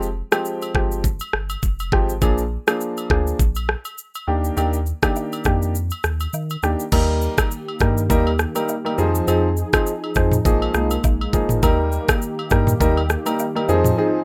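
A dry, rough home-demo sound frames this smooth, hypnotic afrobeats excerpt with a light swing, cut from a longer piece. A clear, up-front grand piano with long sustain carries the chords over a round, deep analog bass with a filter sweep and an electronic afro-pop drum kit of knocking kick, rim click, shaker, toms and crash, while close, acoustic agogo bells and woodblock sit low in the mix. After a break at 5.7 seconds, a mellow, detuned sawtooth pad with chorus enters in the background at 6.9 seconds, softening the second section as the chords move from Eb through Fm7 and Bb7sus4.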